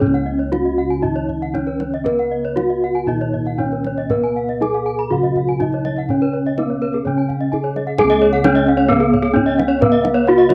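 This fragment of a longer piece is a home cassette recording with a band-limited, vintage tone and a moderate room reverb. It is Balinese gamelan in Db slendro, tuned to A4 = 437 Hz, moving in a straight 4/4 at roughly 117-131 BPM with a shimmering, ceremonial mood. Up front, a bronze metallophone struck with a wooden mallet carries the melody, its paired tuning producing shimmering beats, while round, beating bossed gongs hold the bass. Two brighter metallophones played with horn mallets ring out arpeggios above, one entering at 0.1 s and sounding close-miked, dry and full. Beneath them, a mellow, soft metallophone with padded disc mallets plays accompaniment in the background, and a deep kendang drives the percussion. The music shifts into a new section at 8.0 s and runs to 10.5 s.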